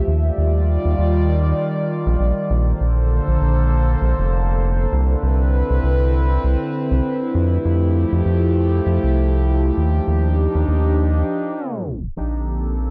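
Intricate and wistful, this IDM excerpt moves at 99 BPM with a light swing, pairing a warbling, nostalgic pad of detuned sustained chords, its chorus, phaser and 12-bit sampler grit giving a lo-fi haze, with a round, deep analog bass through a dark production of light digital ambience, as major-ninth chords drift from Ebmaj9 through Bbmaj9, Cmaj9 and Fmaj9 before a tape stop at 11.6 seconds.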